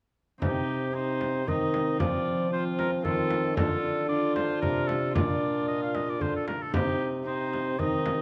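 Rustic and courtly, this brief cut from a renaissance-style consort dance moves at 114 BPM in 3/4 in C dorian, with a clear oboe carrying the melody over a distant, gut-string viola second line, ringing fingerpicked concert harp, a soft-attack warm trombone, a mellow bassoon bass and a deep, vintage frame drum, all playing together from 0.4 to 8.2 seconds in a moderate recital-hall reverb.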